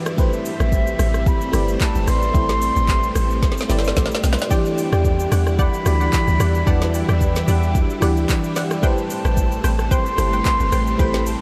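At 111 BPM with a lightly swung 4/4 groove, this late-night amapiano excerpt rides on an up-front afro-pop kit of deep kick, woody snare, metallic hats, handclaps, rim click and shaker (with a fill at 3.4 seconds), a round, dark log drum bass, glassy bell-like FM electric piano with chorus and phaser, lush sidechain-pumped string machine chords, a pure, distant concert flute melody trailed by delay, and punchy detuned chord stabs arriving at 4.5 seconds, all moving from Am9 to Em9 and back inside a dreamy, reverb-soaked space.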